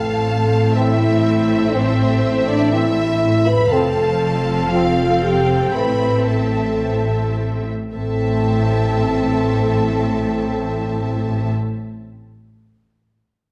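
Mellow French horns hold sustained chords at the heart of this relentless, dramatic cinematic excerpt in A minor, set in a 4/4 pulse of 104-122 BPM that slows between 2.7 and 7.9 seconds, while a distant, focused violin section carries the melody over a smooth second violin line, background violas, expressive close cellos and woody double basses, all bowed with lush vibrato, as bright, tight trombones join at 0.8 seconds over a moving Am to F to Am progression in moderate scoring stage reverb.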